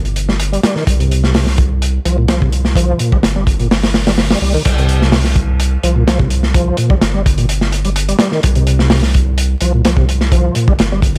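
A deep, thick saturated sub bass opens this swaggering, energetic breakbeat cut from a longer piece, joined almost at once by a crunchy, gritty acoustic drum kit with a tight kick, medium-tuned snare, hi-hat and dark crash cymbals, sitting up front with a rolled-off top, at a straight 127 BPM in 4/4. A reedy, bright tonewheel organ riff arrives at 0.3 seconds, its key click colored by chorus vibrato, fast rotary speaker, overdrive and tape echo. The drop lands at 4.7 seconds, all over a C5 chord, with small room reverb and a layer of vinyl crackle.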